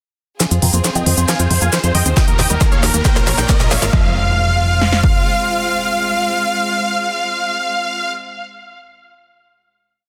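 A huge, detuned supersaw lead carries this short, driving uplifting trance piece in F minor at 136 BPM, playing a repeating sixteenth-note riff in thirds and sixths over a pedal note, pumped by sidechain compression and colored by a low-pass filter sweep and tape echo. Beneath it a lush, close string section holds sustained chords, while a squelchy, resonant acid bass runs a sixteen-step sequence through phaser and echo in the background, its filter also sweeping during the build. A round FM bass with tube saturation rolls in sixteenth notes, and an overdriven techno kit supplies a cracking snare, shaker and smooth hats, with a drum fill across the build. At 2.2 seconds a punchy analog drum machine adds a four-on-the-floor kick and snare as the harmony moves from Fm through Eb and Bbm, and background risers and impacts mark the transitions. From 3.9 seconds the piece settles onto a final F minor chord held by the supersaw and strings, while a dense, heavily limited master and light reverb give the whole a euphoric, up-front sound.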